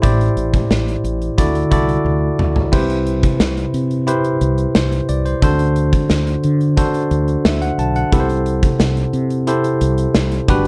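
A nostalgic, dramatic 1980s-style pop excerpt at 89 BPM opens with a bright, bell-like tine electric piano up front over a round, dark fretless bass and a punchy gated drum kit with bright cymbals, a drum fill at 2.1 seconds leading into a passage that moves from Cmaj7 through D7 to Am7/C in a dry, close sound.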